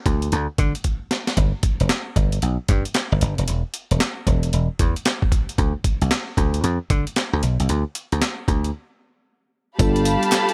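A dry, close-sounding slice of slick, bouncy new jack swing R&B, where a bright, punchy thumbed slap bass and a gritty, compressed, pitched-up breakbeat kit of thumpy kick, snare, hi-hat, handclaps and tambourine carry the swung groove through a break from 8.7 seconds, before a round, warbling FM electric piano with chorus and a lush, bowed string section with vibrato arrive on a G9 chord at 9.8 seconds, joined by a very quiet, crisp group handclap at 10.3 seconds.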